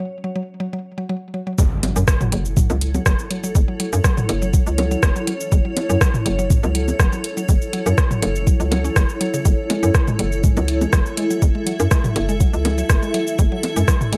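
A woody, mallet-like synth pluck riff with chorus, tape echo and sidechain pumping plays alone for the first 1.6 seconds of this sparse, clinical minimal techno excerpt in F# minor at 122 BPM, before the drop brings a soft, up-front electronic kick, a hollow, bouncy FM bass with tube saturation and pumping, a booming analog drum machine with metallic hats, cabasa and rim clicks re-recorded in a large room, and a background impact lasting to 3.6 seconds, followed moments later by overdriven electronic bongos and toms and, from 2.5 seconds, a cloudy, evolving granular pad with built-in reverb, the whole captured as a dry, gritty hardware recording with light reverb.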